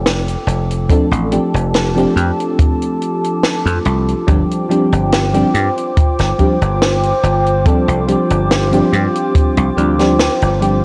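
Heard through the soft haze of cassette tape, with light reverb and a touch of studio ambience, this dreamy, woozy vaporwave fragment is cut from a longer piece and moves at an unhurried pace. A warbly, nostalgic pad built from folded and ring-modulated waveforms holds sustained chords from the start, its slow attack and long release blurred further by chorus and its own reverb. Up front sits a dry, bright thumbed slap bass, foam-muted and punchy, while a compact cocktail kit adds hi-hat and a high-tuned snare from 0.1 seconds. At 0.9 seconds a mellow FM electric piano enters with round, decaying tones bathed in lush chorus and tape echo, alongside a punchy acoustic kick that drops away at 9.5 seconds. The harmony drifts from F69 to G7sus4, giving the piece a hazy, suspended glow.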